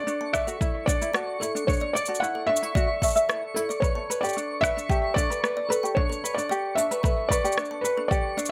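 A straight 4/4 pulse at 112 BPM comes from a deep, up-front electronic kick and a tape-warm electronic shaker and rim click, carrying this delicate, pastoral folktronica excerpt as it moves from Dadd9 to Gadd9 at 3.8 seconds. Up front, a soft, felt-muted upright piano with audible action noise sings the melody through delay, while a light, thumb-plucked ukulele plays delayed arpeggios beneath it. Further back, a woody, hollow-sounding kalimba rings out a second line through tape echo, and a twinkling granular texture with an octave-up shimmer hangs above everything in its own reverb, all set in a modest small room.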